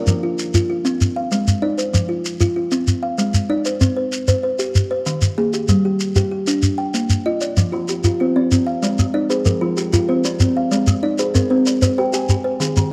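A woody, thumb-plucked kalimba sits up front from the first instant, cycling arpeggios in a trance-like, hypnotic southern African traditional piece in F dorian at 128 BPM in 12/8, joined by a grainy, close and dry shekere while a second, softer fingertip-plucked kalimba with a mellow, ringing, airy tone sounds briefly until 0.4 seconds and returns at 7.7 seconds to weave through the interlocking cycle, all in a small room with light reverb in this excerpt cut from a longer piece.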